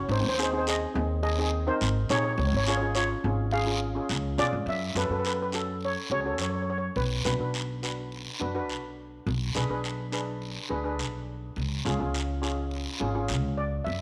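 Bittersweet and cool, this calypso fragment from a longer piece sets a metallic, shimmering lead steel pan played with medium rubber sticks over cello pans that supply the chordal accompaniment, while a dark, woody pizzicato upright bass sits up front and a raspy guiro scratches close and dry. The lead pan carries the melody until 8.4 seconds, leaving the cello pans, bass and guiro to carry on before it returns at 13.6 seconds. A moderate echo chamber reverb lends the studio sound a roomy glow.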